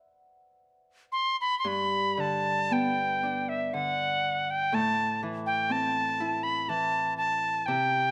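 Heard in a moderate recital hall reverb, this short fragment of a Celtic slow air places both instruments up front. It unfolds in a rubato triple metre, and its mood is wistful and tender. A mellow, ringing, fingerpicked acoustic Celtic harp opens alone and carries the accompaniment across its full span. A bright wooden whistle enters at 1.1 s with the melody, its airy tone shaped by a soft attack and expressive vibrato. The harmony settles on G and moves to A minor at 4.7 s, as the whistle's bright line floats above the harp's ringing resonance.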